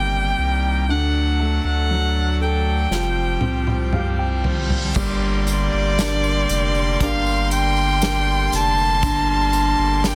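Dry and dense, with a heavily limited modern sheen, this cut from a longer pop ballad carries a longing, melancholic air. A smooth, vibrato-rich solo violin sings up front over a soft felt-muted upright piano, majestic full pipe organ chords and a deep, saturated sub bass. An acoustic drum kit played with bundle sticks enters at 2.9 seconds with a fill, an electronic reverse cymbal sounds at 4.0 seconds, and from 5.0 seconds a lush violin section with portamento and a very quiet, jingly tambourine join in.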